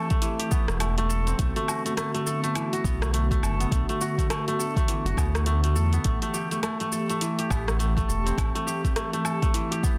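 A crisp, ringing kora sits up front with fingerpicked arpeggios through tape echo and shimmer reverb, over a smooth, detuned sawtooth pad with a soft attack, chorus and sidechain pumping, in this earthy organic downtempo excerpt at 103 BPM in A dorian, with a 16th-note swing, moving from Am7 to Bm7 and back to Am7. From 0.1 s an overdriven deep electronic kick and a layered deep house kit of hi-hat, rim click, shaker and woodblock, both re-recorded in a small room, carry the groove. A round, dark bass with ring modulation, tube saturation and sidechain pumping plays up front from 0.7 s to 8.5 s, all within a dense, heavily limited master with light reverb.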